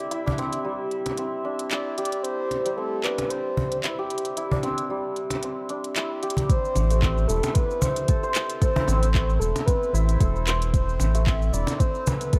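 Meditative and hypnotic, this organic downtempo excerpt in A minor at 113 BPM with a light 16th-note swing opens on shimmering hammered santur arpeggios through tape echo, a very quiet glassy texture of drifting overtones, overdriven electronic handclaps, smooth hi-hat and shaker, and a woody, distant cajon in a large room, joined at 1.7 s by a breathy flute-like synth lead with lush chorus, vibrato and tape echo, before the glassy layer gives way at 6.5 s to an up-front soft, overdriven electronic kick as a round, deep, wave-folded analog bass enters at 6.8 s, the whole cast in dark, warm production with light reverb.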